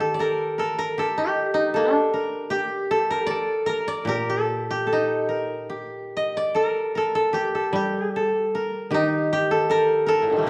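Austere and calm, this short fragment of Japanese traditional music, cut from a longer piece, unfolds in a free rubato feel as three fingerpicked kotos, each dry and woody, sound together from start to finish: an up-front melody line ranging from A2 to Eb5, a softer second line between G4 and Bb4, and a low, faint accompaniment, all heard through moderate recital hall reverb on a worn cassette tape whose warbly pitch drift lends an aged character.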